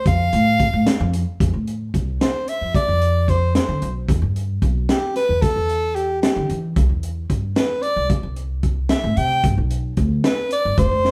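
A breathy soprano saxophone opens this bright, driving progressive instrumental, carrying a solo melody between G4 and G5 in a jazz style, with vibrato, scooped notes and a soft attack, heard close and up front with slapback echo and plate reverb. Moments later an upright bass and a crunchy breakbeat drum kit join. The bass is plucked pizzicato with a woody, steel-strung tone, and the kit of hi-hat, punchy kick and high-tuned snare sounds saturated and gritty, with a rolled-off top. The music moves in an uneven 5/8 at 224 BPM counted in eighths, with a straight feel, in F lydian, tuned to A4 = 438 Hz. After a brief opening passage, a new section begins at 1.4 seconds, with the harmony moving through F, Em, C and G. The whole band sits in a wet studio reverb, heard from further back in the room, and the clip is cut from a longer piece.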